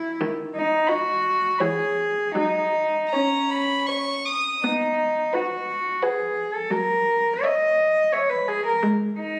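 Classical chamber music: a slow, romantic movement for string quartet in B major, in 3/4 at about 78-91 BPM with a rubato feel, cut from a longer piece. The mood is tender and warm. One violin carries the melody up front, bowed sul tasto with a soft attack and airy bow, its tone pure and floating. A second violin sits in the background on a darker, woody second line with vibrato. The cello, also up front, takes the bass with a smooth top, and the viola enters at 0.2 s with intimate accompaniment touched by light vibrato. The harmony moves from B/D# through C#m7/E, F#5, B and F#7 to G#5 at 8.8 s; the violins fall away just before then, while cello and viola sound until 9.4 s. The violins and viola are captured close, and the whole was recorded on a phone in the room with moderate scoring-stage reverb and compression.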